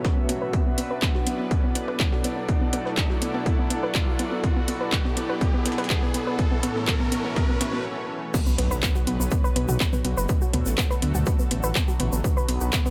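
A heavy, tape-warm electronic kick sits up front through this dark, hypnotic melodic techno excerpt alongside overdriven deep house drums with metallic hats, a gritty, pitched-up breakbeat kit, a lush detuned pad, a soft round pluck arpeggio, an airy breathy pad, a very quiet drone with moving overtones, and a background riser and impact, before the drop at 8.3 seconds brings in a grainy egg shaker and a deep, rumbling detuned saw bass pumping against the kick.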